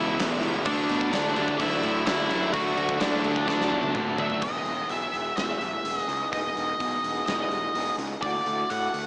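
A straight 4/4 pulse at 127 BPM drives this anthemic, restless slice of quiet-loud alternative rock, where an up-front, dark octave-fuzz lead guitar carries the melody over a growly fuzz picked bass and a big-room rock drum kit with a punchy kick, while two double-tracked riff guitars, one very quiet and bright, the other overdriven with slapback echo in the background, drop out at 4.4 seconds after a drum fill, giving way to a half-time passage over Emaj7 and Dadd9 in which a lo-fi, slightly broken-up guitar through a small old amp plays tremolo-laced arpeggios, all set in a lush 2.0-second hall reverb that sounds arena-sized.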